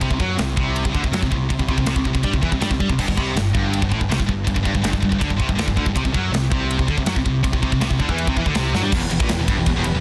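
A straight, driving 4/4 pulse opens this epic, heavy metal fragment, with an up-front acoustic kit in a big, airy room hitting tight kick, a medium-tuned snare and bright crash and ride cymbals, then rolling into a fill at 8.7 seconds. Three picked, distorted guitars, one double-tracked and set back, grind out riffs over C5 and G5, joined by a growling, overdriven bass played direct and amped. At 8.9 seconds the harmony turns to E minor as a reedy, gut-toned string section with light vibrato slips in behind with sustained bowed chords, all inside a dense, heavily limited modern master.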